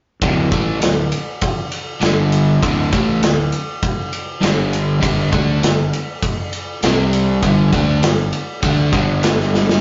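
Classic rock with a sunny, swaggering strut, cut from a longer piece: a crunchy, double-tracked overdriven guitar sits up front picking a riff around D5, G5 and C5 power chords, with a growly fingered electric bass thick with fuzz beneath it. A big acoustic drum kit drives it with a punchy kick, medium-tuned snare and bright ride cymbal, then throws in a fill at 9.5 seconds. The sound is a rough rehearsal-room take with tube saturation, a moderate studio reverb and a rolled-off top end.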